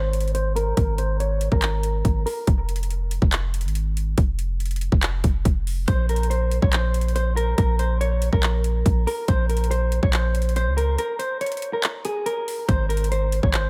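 A clean, dark semi-hollow guitar carries the melody in this eerie, hard-hitting trap excerpt, its compressed hollow-body tone colored by spring reverb, tape echo and a low-pass filter, with a filter sweep shaping the opening phrase. The guitar plays briefly at the start, falls away, and returns at 5.9 seconds to carry on to the end. Underneath, a deep, boomy 808-style bass with a fast attack and mellow, decaying sine tone runs throughout, sitting up front alongside an electronic trap kit of hard-clipped kick, metallic hi-hats and handclaps in a half-time feel. The harmony moves from Abadd9 to Fm and then to Bbsus2, settling back on Abadd9 after a break between 11.0 and 12.7 seconds. The room itself is fairly dry, yet the mix is heavy with echo, lending the piece a haunted, suspended atmosphere.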